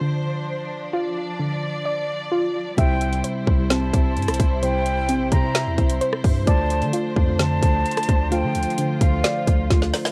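Hip hop with a trap pulse, this eerie, dark fragment from a longer piece moves at 130 BPM in a half-time feel in D minor, shifting from Dm7 to C at 2.8 seconds and back to Dm7. It opens with a clear symphonic string section holding bowed chords with light vibrato and a smooth top, beneath a soft, round pluck playing arpeggios through chorus, a low-pass filter and tape echo. At 2.8 seconds the electronic trap kit arrives up front, with a hard-clipped kick, woody snare, metallic hats and rim clicks carrying a cassette tape grit, joined by a deep, boomy 808-style bass with a sine core. Soft, full-bodied electric-piano-like synth keys fill out the accompaniment with chorus and a filter sweep, while an airy, expressive jazz flute adds a high second line with vibrato and tape echo. The whole thing sits in light reverb with the character of a home cassette recording, and a drum fill closes the passage at 9.7 seconds.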